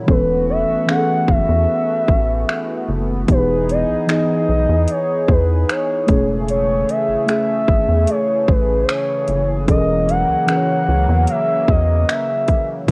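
A straight 75 BPM trap kit of hard-clipped kick, overdriven metallic hi-hats and finger snaps sits up front in this smooth, romantic contemporary R&B excerpt alongside a rubbery, bouncy square bass, muted, warbling felt-like synth keys, a shimmering pulse-width pad and a gliding portamento lead with vibrato, over chords moving from B7sus4/E through Emaj7 at 3.3 seconds, Amaj7/E and F#7/E, with the light reverb and vintage haze of a home cassette recording.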